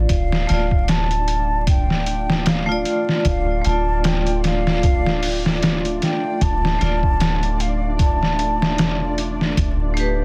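A dense, heavily limited master with vinyl crackle frames this dark, brooding trip hop excerpt, sitting on D minor at 76 BPM with a 16th-note swing of 57%. Up front, a compressed, pitched-down sampler-style drum kit thumps out kick, snare and hi-hat with a muffled weight and a touch of studio reverb, while a soft, round 808-style bass, saturated through tubes, anchors the low end on D1 to E1. A vibraphone struck with hard mallets rings with a metallic, band-limited vintage color, its tremolo and tape echo roughened by 12-bit sampler grit, over a deep, detuned sawtooth pad that holds sustained chords with chorus and its own reverb. From 0.1 to 9.1 seconds a pure, hollow concert flute carries the melody between F5 and A5, its vibrato lines colored by dub echo. A very quiet, flickering granular texture hovers on D4 beneath everything else, and the harmony rests on Dm until shifting to Gadd9/D at 9.6 seconds.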